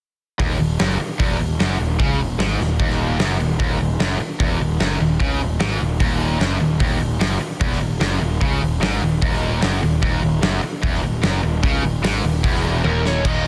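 An aggressive, menacing hard rock fragment opens at 0.4 s with a cranked stack guitar and a tight, distorted guitar sitting further back, both picking a bright riff over a round, fuzzy electric bass held up front and a big, dark acoustic rock kit with a fat snare and punchy kick, until a drum fill at 12.8 s coincides with a brief entry from a smooth overdriven lead guitar, all in a dry, dense, heavily limited modern master.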